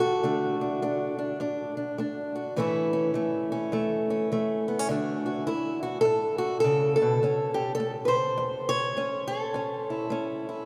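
A boxy, fingerpicked acoustic archtop guitar sits up front and alone in this soulful, gritty country blues fragment, playing with a swung feel as it moves between D and A chords across its 10.7 seconds. The playing spans from deep bass notes to a bright upper register, and the church-like hall wraps it in a long, wet cathedral reverb that lets each phrase hang in the air.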